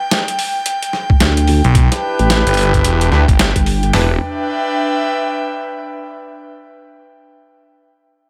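A nasal, wobbling vowel-sweep bass drives this swaggering, gritty glitch hop cut at 110 BPM in E minor, alongside a swirling, thick phased detuned saw bass from 1.6 s, two compressed boom bap sampler-style drum kits re-recorded in a large room that enter at 0.1 s and 1.1 s, and a mellow horn section firing tight, punchy stabs with tape echo from 1.9 s, all over an airy, breathy pad on Em7 that carries on alone from 4.2 s to 6.1 s.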